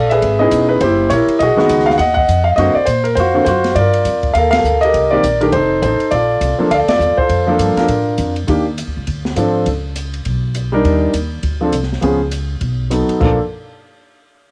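An intimate grand piano, up front with audible action noise and long sustain, carries the melody over a woody, thumpy pizzicato upright bass from the very start of this sophisticated, fast jazz piano trio excerpt, swinging at 203 BPM in 4/4. A dark, smooth drum kit with a high-tuned snare, boomy kick and dark china, ride and hi-hat cymbals sits low in the mix, and it shares a cassette-tape character with the piano, all in a small home room with light studio reverb. The band hits accents at 4.5 and 6.9 seconds as harmonies like Dbm9, D7alt and Bbmaj7 give way to a second passage at 8.5 seconds that moves through Ebmaj7, Db7 and B7 before a brief chordless close.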